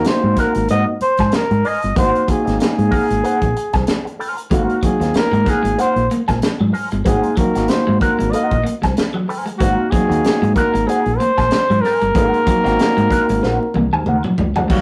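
Swung sixteenths at 94 BPM drive this energetic, funky excerpt, where a tight, up-front drum kit with a high-tuned snare and a round, punchy fingered bass anchor bell-like electric piano stabs on an Ab9 chord and a dark, wah-filtered guitar; a mellow, forceful jazz trumpet solo with scooped notes leads from the start, a twangy clean guitar riff enters in the background at 4.5 seconds, and a drum fill at 13.4 seconds closes out a rough, saturated rehearsal-room sound dusted with vinyl crackle and a wet small-room reverb.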